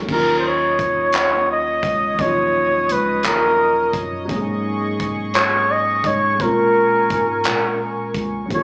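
A breathy flugelhorn carries the melody up front in this slow six-eight R&B excerpt in E-flat minor, its mellow, jazz-style lines marked by light vibrato, scooped notes and a slapback echo. Underneath, a worn, slightly out-of-tune tine electric piano plays the accompaniment, lightly overdriven through a combo amp, while a second, cleaner tine electric piano holds down the bass through built-in speakers. A dark analog pad of sawtooth and triangle tones with a sub octave sustains chords on a slow attack and long release, shimmering with chorus. A soul drum kit joins at 0.1 seconds at 57 BPM, with a tight kick, hi-hat, handclaps and dark crash cymbals in a small-room sound with a rolled-off top. The harmony moves from Ebm7 through Ab7sus4 to Bbm7, and the whole performance comes across as a sultry, yearning live gig heard through a venue's PA, with club reverb and a small-speaker sound.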